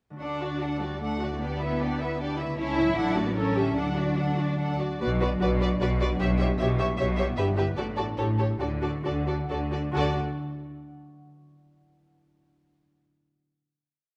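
Spirited and graceful, this short, dramatic romantic movement for symphony orchestra moves in a fast 3/4 at 132-155 BPM in D major, with rubato phrasing and a slowing from 6.8 to 9.9 seconds before a final chord. A concert harp rings out rolled chords and sweeping arpeggios from 0.1 seconds, while a focused violin section carries the melody with a rocking two-note figure and repeated notes, and a soft-attack second violin line and lush violas fill in sustained chords behind it. Cellos sing a smooth melody and bass on the beats, and an up-front double bass section doubles the bass line; the strings stop at 10.2 seconds, leaving the harp to finish at 11.2 seconds in a moderate scoring-stage reverb.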